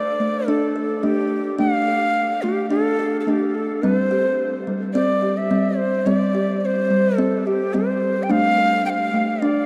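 From the first moment, a breathy Native American-style cedar flute and a kalimba sound together, setting a hypnotic, gentle world-meditative mood at 107 BPM in 4/4 with a light swing on the sixteenths. The kalimba plays mellow, woody arpeggios with a hollow-box character and short, soft fingertip plucks, sitting up front in the range from G3 to A4. Above it, the flute carries the melody between G4 and G5, its soft-attack tone full of breath and expressive vibrato, with a delay trailing its phrases. The harmony in D minor pentatonic moves from Dm to C5 at 3.8 seconds and back to Dm at 8.3 seconds. A huge, wet reverb with a long 8.2-second tail places the pair in a vast, echoing space, and this short passage, cut from a longer piece, ends at 9.7 seconds.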